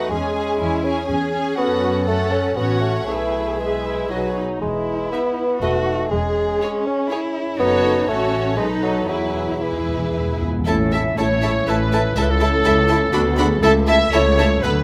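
Close, detailed microphones and a light reverb give this orchestral excerpt a clear, present sound. It is a quick, graceful and lively classical-period movement in 3/4 at 120 BPM, played with a rubato feel, opening in E major and moving to A major at 10.7 seconds. A lush symphonic violin section carries the bowed melody with rich vibrato, while an intimate chamber violin section plays a second line sul tasto with soft attacks. A mellow solo bassoon sits up front in the accompaniment, and a distant viola section adds smooth, even support in the background alongside a French horn section holding sustained chords. Underneath, an expressive chamber cello section with portamento and a studio double bass section with a smooth top form the bass line. Timpani with calf heads and medium mallets play a fill from 9.1 seconds, the bassoon falls silent at 10.4 seconds, and a warm solo clarinet takes up a second line as the music arrives in A major.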